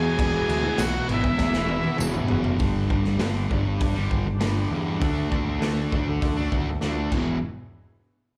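Rowdy and swaggering, this short cut from a longer garage rock piece struts at 100 BPM in a straight 4/4, heard as a live club gig through the venue's PA with a roomy reverb. A bright, double-tracked fuzz guitar riff sits up front from the start, with a growling, overdriven picked bass underneath, while an overdriven combo organ with light vibrato plays a brief buzzy melody with slapback and tape echo until 2.0 seconds. Behind them a clean combo organ holds sustained chords in the background, and a raw, saturated drum kit with a punchy kick, dark cymbals and a rolled-off top brings fills from 1.4 to 2.6 seconds and again at the close. A close, jingly tambourine adds sparkle only briefly near the opening. The harmony moves from E to G at 2.6 seconds, then D, before returning to E just before the cut.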